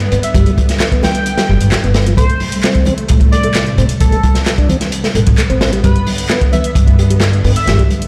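A straight 4/4 breakbeat groove at 131 BPM drives this funky, gritty clip, led by a crunchy, saturated acoustic kit sitting up front with a tight kick, medium-tuned snare and hi-hat, its top rolled off. A punchy analog drum machine adds tape-warm handclaps and hi-hat, and close, dry congas with a thick skin join at 0.6 seconds in the background. A woody pizzicato upright bass carries the low end as the harmony moves from G to Am7 and back to G at 5.8 seconds, while a bowed studio string section holds soft-attack sustained chords with vibrato, pumping under sidechain. A mellow, round tonewheel organ plays a dark riff through light overdrive, fast rotary speaker, 12-bit sampler grit and dub echo. Above it, an airy, dreamy lead sings the melody with chorus, vibrato, an AM radio tone and its own dub echo. The mix sounds as if played on a big sound system in a bare room, wrapped in a large studio reverb.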